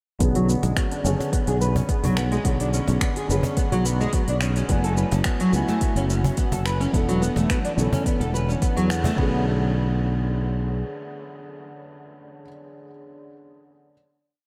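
A lightly swung 4/4 groove at 107 BPM carries this meditative, earthy organic downtempo piece in B dorian, built from a deep, tape-toned electronic kick, an overdriven layered kit of finger snaps, smooth hats and shaker, and a snappy cajon tucked in the background. Up front, a fingerpicked nylon-string guitar repeats a 12-step loop that drifts against the bar, while a growly, punchy fretless bass plays a dotted rhythm with sidechain pumping, and a dark, thick-felt upright piano holds drop-2 chords with syncopated pushes; the guitar and piano both carry chorus, delay and filter sweeps. After a band accent, the drums stop around 9.2 seconds, and a final Bm69 chord rings in the dreamy, reverb-soaked mix until the piano ends at 13.9 seconds.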